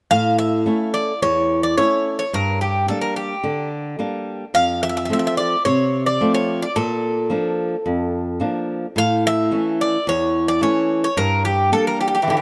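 A straight, even 4/4 pulse carries this brooding, bittersweet Greek folk piece, a short passage cut from a longer performance by a Greek bouzouki band. A picked bouzouki takes the melody from the first moments, its double strings ringing with a metallic edge and some octave-doubled courses that give the line a full, warm shimmer. Beneath it, a fingerpicked flamenco guitar plays a bright accompaniment from its low register upward, the occasional finger squeak audible on the strings. The harmony cycles through A, Gm, F and Bb before the phrase begins again at 9.0 seconds. In the closing instant, at 12.2 seconds, a second bouzouki with a mellower tone slips in on a single low note. All three instruments sit up front in the mix, lightly touched by reverb.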